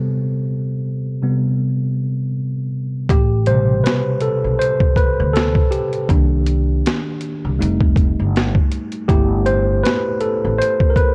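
A swung sixteenth-note groove at 80 BPM in 4/4 carries this reflective, nostalgic lo-fi hip hop piece in A minor, cut from a longer work. A worn, slightly out-of-tune tine electric piano opens alone on Am9, lightly overdriven and heard as if through built-in speakers, later moving through Cm7 and F9 to G69. At 3.1 seconds a gritty, compressed sampler-style boom bap kit arrives up front, pitched down with a thumpy kick, a high-tuned snare and hi-hat, alongside a woody, dark pizzicato upright bass on steel strings that drops out at 10.6 seconds. The whole recording sits in light reverb with the warbling pitch drift of worn old cassette tape.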